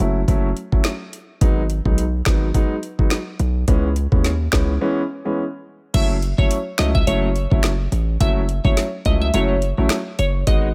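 Dry and up-front, this sultry, tough dancehall cut in F# dorian at 106 BPM with a 16th-note swing sets a knocking kick, woody snare, metallic hats, finger snaps and crash from an electronic island pop kit over a punchy, heavy 808-style bass and a polished grand piano pumping under sidechain on F#m7, G#m7 and C#m7 chords, and after a break at 4.8 s a glassy, crystalline wavetable pluck with chorus and delay enters at 5.9 s to carry the melody.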